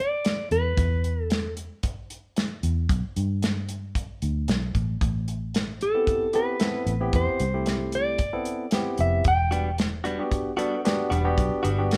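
Straight-eighth soul blues in E minor at 113 BPM, mournful and soulful, cut from a longer piece, where a dark, clean, fingered electric guitar sings its melody up front from 0.0 s and again from 5.8 s over a tight, small-room soul drum kit with a medium-tuned snare and rolled-off top, a round, punchy foam-muted fingered bass, a barky tine electric piano pushed through a combo amp entering at 5.9 s, and warm, compressed direct-recorded guitar stabs arriving at 9.5 s, all played live together in a stone room as the chords move from Em to Am9 to Em9.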